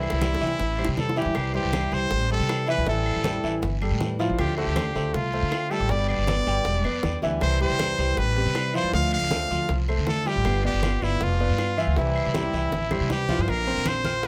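Warm and danceable, this cut from a longer Cuban son and guajira piece is led by a brilliant, punchy solo trumpet up front with forceful pop-style vibrato, over a thumpy, woody pizzicato upright bass on gut strings. A concert grand piano plays arpeggios with deep bass and short sustain, while a boxy, picked old ladder-braced acoustic guitar with audible finger squeak sits in the background. Low-tuned, thick-skinned congas, tight high-tuned bongos and a raspy guiro also sit back in the mix, faint distant claves click from a large room, and percussion fills open the track and return at 12.7 seconds, all in a close, detailed sound with light reverb.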